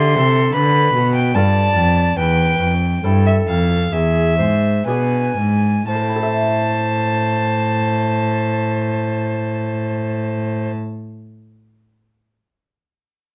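Grave and flowing, this short cut from a baroque-style sonata movement in A minor moves with a rubato feel between 58 and 77 BPM, slowing over its first 5.9 seconds before settling on A minor at the new section. A mellow, pure-toned alto recorder carries the melody with vibrato and a soft attack, while a violin with an airy bow and nasal gut-string tone sings a second line above it, and a single up-front cello anchors the bass with a rich, reedy sound. In the background a delicate fingerpicked lute, with doubled gut strings, supplies the accompaniment and rings on alone briefly until 11.1 seconds, all captured dry with close, detailed microphones.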